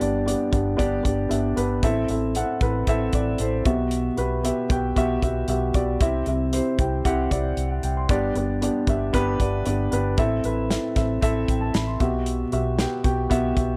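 A dark, mellow concert grand piano sits up front in this hopeful piano-driven pop excerpt in G major at 115 BPM, carrying the chords from G through Am and Emadd9/B to C over a round, foam-muted fingered electric bass and an airy, polished country drum kit with a punchy kick and medium-tuned snare, all captured in a dry, close 1970s-style studio sound.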